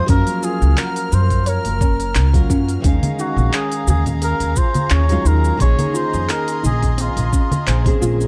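Smooth and wistful, this sunset chillout excerpt moves at 87 BPM in 4/4 with a light sixteenth-note swing, set in Eb dorian over chords of Gbmaj7, Ebm11 and Bbm11. A cup-muted trumpet carries the melody in a soft, veiled jazz style with scooped notes, touched by digital delay, while a full-bodied, fingerpicked nylon-string guitar accompanies with audible finger squeak. Behind them, a dark studio string section holds sustained chords with light vibrato and a sul tasto softness, and a round, decaying synth pluck ripples arpeggios in the background through chorus and delay. A woody pizzicato upright bass sits up front from 0.1 seconds, joined by a knocking, tape-warm electronic kick and a smooth R&B kit of handclaps, hi-hat and shaker in a small room ambience. Close, dry congas played with soft hands join at 3.0 seconds, and the whole production stays dark and warm with little reverb.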